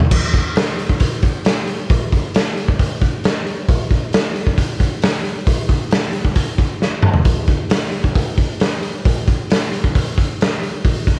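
A raw, saturated acoustic garage drum kit sits up front in this raunchy, gritty rock fragment at 134 BPM in straight 4/4, its punchy kick, medium-tuned snare, hi-hat, toms and crash cymbal sounding dark and smooth with a rolled-off top and little reverb, playing alone throughout and breaking into a short fill at 6.8 seconds.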